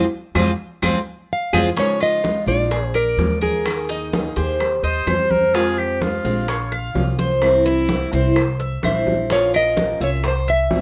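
Sultry and warm, this excerpt of Cuban son and guajira opens with a band accent as a picked steel-string acoustic guitar, a metallic, double-strung Cuban tres playing arpeggios up front and a dark, thumpy pizzicato upright bass set the groove, joined at 0.4 seconds by tight, high-tuned bongos, woody claves and thick-skinned congas. A fingerpicked nylon-string guitar carries the classical-toned melody up front, and a clear, punchy trumpet with light vibrato enters at 4.8 seconds with a vintage second line. After a late drum fill the nylon-string melody returns at 8.9 seconds, all set in light reverb.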